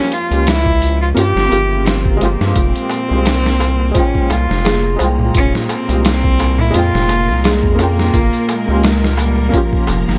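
Dark, smoky trip hop, cut from a longer piece, built on a swung groove over an Fmadd9 chord, with an intimate, sul tasto solo cello carrying the melody up front, its airy bow and light vibrato roughened by 12-bit sampler grit and tape echo. A felt-muted upright piano with tremolo and audible action noise, sustained string-machine cellos with ensemble chorus, and bell-like celesta arpeggios (also gritty and tape-echoed) sit behind it. A pitched-down, boom bap sampler-style drum kit with a thumpy kick and a small-room tone enters near the start, quickly followed by a deep, round, wave-folded analog bass, while a very quiet clay-shell darbuka played with soft hands enters at 2.6 seconds.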